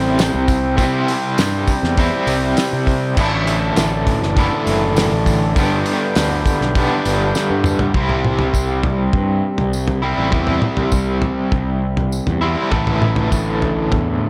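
An overdriven semi-hollow guitar sits up front, its bright, double-tracked picked riff shimmering with tremolo through the whole 14-second excerpt of this kaleidoscopic, trippy psychedelic rock at 100 BPM in straight 4/4. Beneath it, a fuzz-laden picked electric bass gives a round, overdriven low end. A cloth-damped drum kit thuds along with a fat snare, tight kick, dark cymbals and a rolled-off top, joined by a jingly tambourine in the background. A reedy vintage combo organ holds clean sustained chords bathed in spring reverb until 7.9 seconds, just after a drum fill at 7.3 seconds leads into the second section. The harmony moves from C through Asus4 and G6 before returning to C, all in a small room with light reverb.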